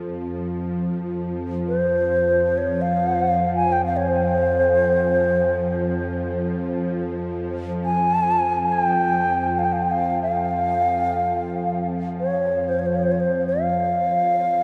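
A tense, string-like drone opens this meditative world piece, its detuned sawtooth tone edged with ring modulation and a noise layer, rising on a slow attack into a sustained, low hum with its own reverb and vibrato. At 1.7 seconds an airy wooden-headed alto flute comes up front with a free-time melody, tongued and slightly unsteady, its vibrato trailing through a delay. Both sit in a vast, echoing space, and this spacious, unhurried fragment is cut from a longer piece.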